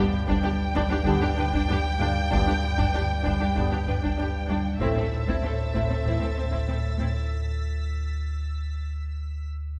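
Tense and mysterious, this suspense film-score cue sets an expressive, dark violin melody over a smooth second violin line, lush violas, rich cellos and very quiet double basses, with mellow French horns and bright trombones holding chords in the background. A ringing harp riff, a deep sine sub-bass drone, a warbling lo-fi tape-like pad with chorus, a faint vintage grand piano with audible action noise and a taiko ensemble struck with heavy sticks all sit within a wet scoring-stage reverb. At 4.8 s a soft, high violin texture enters, and from 7.3 s the harp, sub bass and those high violins carry the break.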